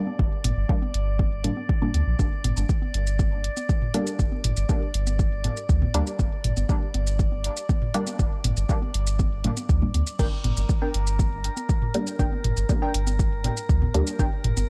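Hazy and deep, this dub techno excerpt sits in a steady, straight four-beat pulse on a single minor chord throughout. An overdriven, deep electronic kick sits up front alongside a round, soft sub bass with a touch of tube saturation, while a layered deep house kit adds crash cymbal, hi-hat and shaker, and tape-toned analog congas and toms pump along with the groove. A muted, detuned chord stab carries the harmony with filter plucks, phaser and dub echo, its sidechain pumping giving it a breathing motion. Above it, a glassy, slowly blooming texture of drifting overtones shimmers with chorus and its own reverb. At 10.2 seconds a crisp, digital wavetable stab joins with decaying plucks and echoes of its own, set against the dark production.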